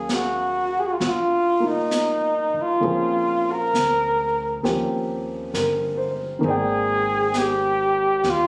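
A slow swung 4/4 at 67 BPM sets the pace for this melancholic, smoky jazz ballad, a short 8.5-second passage cut from a longer piece and tuned slightly low to A4 = 437 Hz. Up front, a close-miked flugelhorn carries the melody between Eb4 and Bb4 in a solo jazz style, its soft attack and vibrato giving the line a warm glow. Beneath it, a natural-sounding baby grand piano supplies accompaniment from Eb3 to G5, while a woody pizzicato upright bass with steel strings sits low and quiet between G1 and Eb2. A brush kit joins at 0.1 s with brushed snare, hi-hat and a high-tuned snare drum, heard in an acoustic studio room. The harmony moves from Ebm11 to Bbm9, Eb13 and finally Abmaj9#11, and the whole take has a light reverb and compression, with the intimate quality of a phone recording made in the room.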